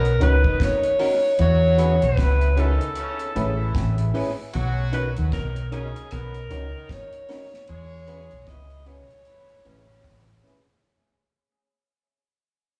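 Lovers rock reggae at 76 BPM in B major, this sweet, romantic passage is cut from a longer piece and fades out across its roughly 10.8 seconds, moving through Bmaj9, E6 and Amaj7 with a lightly swung sixteenth feel. A breathy alto saxophone carries the melody up front in a clear, jazz-style solo voice with light vibrato and scooped notes, trailed by tape echo, while a distant, roomy horn section plays a second line beneath it through analog delay and slapback echo. The deep dub fingered bass sits prominently, dark, round and punchy with a foam-muted tone, alongside a dry acoustic reggae kit of tight kick, medium-tuned snare and hi-hat that enters at 0.1 seconds with analog delay. At 0.2 seconds a mellow FM electric piano adds soft, decaying accompaniment with a faint noise layer, chorus and slapback echo, and an electric guitar through a small old amp places slightly broken-up, compressed stabs in the background, coloured by ensemble chorus, analog delay and slapback echo. 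The whole performance comes across as a live gig heard through the venue's PA, with club reverb and small-room ambience.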